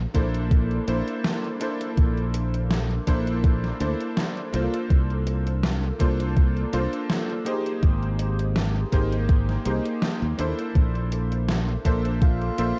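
Vaporwave at 82 BPM in Bb lydian, dreamy and nostalgic, where a clangy, chorused electric grand piano with tape echo drifts over Bbmaj9#11, C13sus4 and Abmaj9 chords, a growly, tube-saturated fingered electric bass sits up front, an overdriven, thumpy electronic kick with 12-bit sampler grit anchors the lightly swung groove beside a gated 80s drum machine's hi-hat and gated-reverb snare, and a breathy, whispered tenor saxophone slips in on a single F4 at 12.2 seconds as this dark, lightly reverberant fragment closes.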